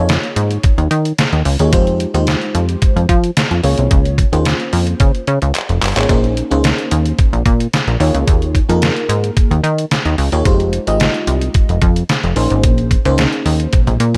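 A straight 4/4 groove at 110 BPM drives this danceable, funky early-eighties boogie funk excerpt in Bb dorian, where a detuned 8-bit digital drum machine with a thumpy kick, medium-tuned snare, handclaps, hi-hat and toms sits up front in gated reverb, with fills at 5.5 and 13.7 seconds, alongside a punchy, plucky analog bass built from sawtooth and pulse waves and a lush, dreamy FM electric piano with a soft pad layer, treated with chorus and phaser, moving through Eb9sus4, Fm9, Db6 and Bbm11 in a dry mix.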